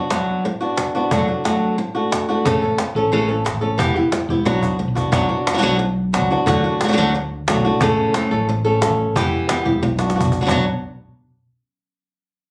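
A snappy, close cajon played with soft hands sets a straight 4/4 pulse at 179 BPM, adding fills around 4.5 seconds and again at 10.0 seconds in this passionate, mournful flamenco passage in B minor, cut from a longer piece. Up front, a fingerpicked acoustic flamenco guitar with fresh strings carries the melody over a Bm, D, A, Em cycle, and a dark, round, woody fretless electric bass with an amped, hollow-body tone enters at 2.5 seconds. The sound is that of a phone recording in a club room, compressed and wrapped in moderate reverb.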